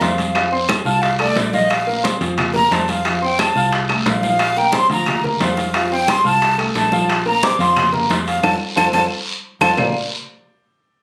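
Captured on a phone in the room with a moderate club reverb and compression, this lively, sophisticated Afro-Cuban jazz excerpt puts a breathy, bright concert flute up front, its soft-attacked, slightly unsteady solo shimmering with vibrato over a natural-sounding baby grand piano and a punchy, foam-muted fingered electric bass. Behind them sits a background percussion bed of tight, high-tuned bongos, ringing congas, metal-shell timbales and woody claves that join at 0.3 seconds, alongside a raspy guiro. The band hits an accent from 8.4 seconds, and a drum fill at 9.3 seconds leads into a new section at 9.8 seconds.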